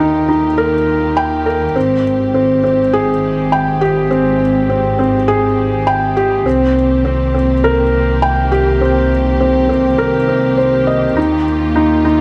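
A straight 4/4 pulse at 102 BPM carries this luminous, tender electronica excerpt, with a felt-muted upright piano up front playing a mellow riff through a digital delay, its thin felt and audible action noise giving it an intimate closeness. Beneath it, a studio string section holds soft-attack, sul tasto chords, while a double bass section bowed with vibrato adds a rich, focused low end warmed by tube saturation. The harmony moves from Ebadd9 to Abmaj7 and Cm7 before returning to Ebadd9, all set in a moderate scoring-stage reverb.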